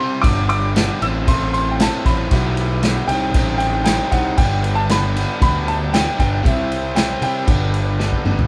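An upbeat, jangly indie rock excerpt at 116 BPM in G major opens with a brilliant, woody upright piano melody over a picked, double-tracked overdriven electric guitar riff and a buzzy vintage combo organ holding sustained chords with light vibrato in the background, joined at 0.2 seconds by a growly fuzz bass and an up-front acoustic drum kit played with bundle sticks, its punchy kick and dark cymbals ringing in a small, airy room, until a drum fill at 8.0 seconds.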